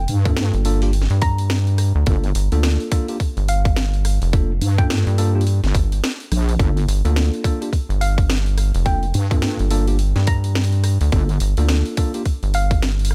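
Funky and playful, this glitch hop excerpt in G minor rides a swung 106 BPM groove on a single Gm7 chord, where a rubbery, bouncy square bass and a heavy, wobbling bass with chorus and tube saturation sit up front beside a tight, overdriven electronic kick and an overdriven kit of cracking snare, rim click and bright hats, while a worn, slightly out-of-tune electric piano plays stabs with sidechain pumping and delay and a woody, wave-folded pluck carries the high melody with chorus and delay in a digital ambience.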